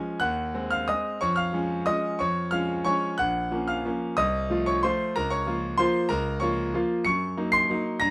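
Graceful and playful, this brief classical piano waltz in Db major moves in 3/4 at 172-202 BPM with a rubato feel, cut from a longer piece. A solo concert grand piano plays for the full 8.1 seconds, its tone clear and smooth with a deep bass and a vintage character, sitting up front in light reverb. The harmony passes through Ab7/Eb, Db/F, Bbm and F7/C before moving on to Bbm/Db and Ebm7/Gb.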